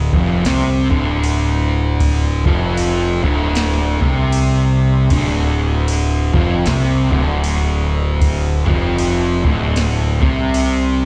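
Hypnotic and ominous, this swung stoner and doom metal fragment, heard live through a venue's PA, pairs a dark, double-tracked fuzz guitar riff carrying distortion and slapback echo with an up-front, punchy picked electric bass thick with overdrive and tube saturation, while a soft analog rhythm box supplies a deep kick, crisp snare and crash cymbal, its kick and snare dropping out from 4.3 to 5.1 seconds over a steady D minor chord.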